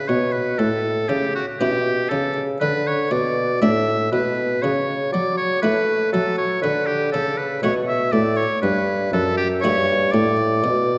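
A clear oboe carries the melody up front throughout this short passage cut from a longer piece, singing between F#4 and E5 in a classical style. It is a baroque-style sonata movement in D major with continuo, moving at 60 BPM in a straight 4/4 with a flowing, dance-like mood. A mellow bassoon, also up front, holds the bass line with light vibrato and a smooth top. A buff-stop harpsichord fills in the accompaniment in the French style, its plucked, muted tone sounding lute-like and dry. The harmony moves from A to a D5 at 2.6 seconds, then A/C# at 4.6 seconds, and settles on D at 6.6 seconds. The ensemble is heard from further back in a concert hall whose wet reverb lingers around the instruments, with tuning set slightly low at A4 = 439 Hz.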